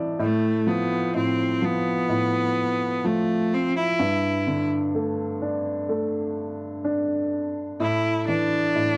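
In a straight, unhurried 4/4, this melancholic pop fragment opens with a short fill on a clear, woody upright piano that then settles into accompaniment beneath chords moving from F/A to Gsus2 and on to A5. At 0.2 seconds a single bowed cello takes the melody, biting and intense with light vibrato and a slapback echo, sitting up front beside the piano. The dry, close 1970s-style studio sound carries only a touch of reverb, giving this emotional passage from a longer piece an intimate, natural feel.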